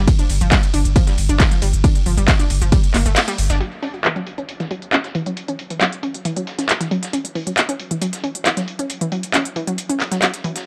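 Driving peak-time techno at 136 BPM, hypnotic and intense, opens this cut from a longer piece on a drop where an overdriven, up-front electronic kick and a thick, tube-saturated sub bass pump until the kick drops out at 3.2 s on a band accent, and at 3.6 s the bass stops as the section shifts to an F#5 chord and a filter sweep runs across the round, detuned analog pluck riff with its chorus and tape echo, all over an overdriven techno kit of handclaps, smooth hats and ride plus a dusty, compressed soul sampler-style kit of hi-hat and snare in the background, in a dry, gritty hardware recording with cassette tape character.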